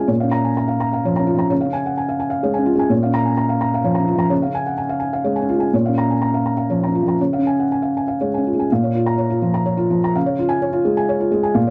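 A dark, tape-saturated sound with light reverb frames this melancholic, intimate fragment of neoclassical minimalist piano, in which a solo felt-muted upright sits up front with a soft, mellow tone, moving rubato in 3/4 at 127 BPM through a Bb minor and Db major alternation across its 11.7 seconds, spanning Bb2 to Bb5 and turning to a new section at 8.7 seconds.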